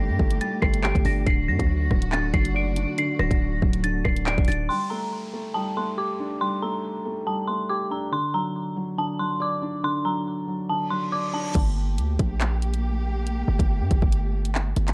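A dark, dry mix opens this ominous half-time drill fragment at 140 BPM in G harmonic minor, where an eerie, inharmonic FM synth bell with chorus and delay carries the melody over a mellow felt-muted upright piano full of audible action noise, lush bowed strings, a punchy sine 808 with a noise layer, and a kit of hard-clipped kick, bright hi-hats, handclaps, rim clicks and crash; the drums, bass and strings drop away around 4.7 seconds, leaving bell, piano and an electronic downlifter until a reverse cymbal at 10.9 seconds brings them back at 11.6 seconds.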